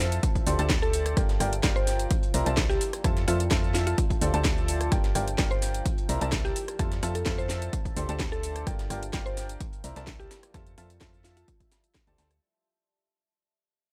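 A bright, woody upright piano riff with sidechain pumping drives this energetic, soulful piano house excerpt at 128 BPM, cycling through D7sus4, Gm7, C13 and Fmaj7 over a round FM bass, a punchy up-front electronic kick, a layered house kit with a cracking snare, metallic hats, rim click and shaker, a very quiet gritty breakbeat kit, a deep, moody pad in the background with chorus and reverb, and a mellow mallet-like pluck melody with tape and analog delay from 0.8 s, all captured in a dry, saturated hardware sound that fades out from 4.9 s.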